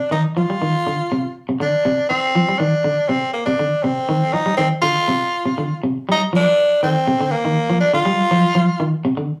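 A raspy tenor saxophone opens this funky, hypnotic afrobeat fragment, cut from a longer piece, carrying the melody up front with a gritty, close-miked edge, vibrato and scooped notes in a pop-styled solo voice. A moment later, at 0.1 seconds, a twangy electric guitar on the edge of break-up joins with fingered arpeggios in a low register, its tone shimmering through tremolo. The harmony circles between suspended C and F chords, darkening briefly to a C minor eleventh before settling back. Around 6.1 seconds the music moves into a new section. The rough rehearsal-room sound is dressed in a short, wet studio reverb, and the saxophone falls silent at 8.9 seconds while the guitar rings on briefly.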